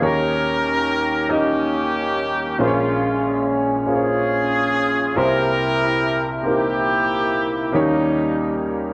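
Solemn and soulful, this short gospel fragment moves in an unhurried 6/8 with a straight feel. A horn section carries the melody from 0.0 to 8.9 seconds as a blended ensemble, its light vibrato giving it a pop-style sheen while its roomy, distant tone is touched by analog delay. Beneath it, an upright piano accompanies across the same span with a woody, polished sound and long sustain, sitting up front in the mix. The harmony moves from Eb7 to Bbm7, then to C7, before returning to Eb7 near the close. A lush hall reverb and a hint of small-room ambience soak the whole mix, giving it a dreamy glow.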